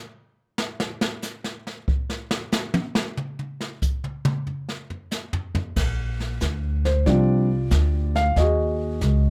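A sophisticated, warm jazz piano trio excerpt swings at 92 BPM in 4/4, opening with a brushed drum solo from 0.6 seconds that features dark cymbals, a medium-tuned snare and a boomy kick. The woody pizzicato upright bass enters at 5.8 seconds as the harmony settles into Bb major, moving from a Bb69 chord to Ebm7. A dark, mellow grand piano with short sustain takes the melody from 6.8 seconds, all captured up front with close, detailed microphones and light reverb.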